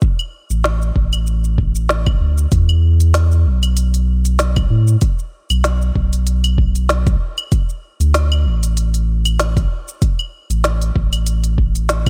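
A lightly swung 4/4 groove at 96 BPM, with a 55% swing on the 16ths, drives this short organic downtempo cut, which feels mystical and hypnotic. A deep, tape-warm electronic kick sits up front from the first moment, alongside an electronic kit of woody snare, crisp hi-hats, claves and shaker. At 0.5 seconds a round analog bass enters, moving between A1 and A2 with fast-attack, sustained notes built from triangle and sine tones. The bass is dark and up front, colored by tube saturation, a filter sweep and sidechain pumping. The mix is dry, with little reverb, and the one section holds its steady, trance-like pull through to 12.1 seconds.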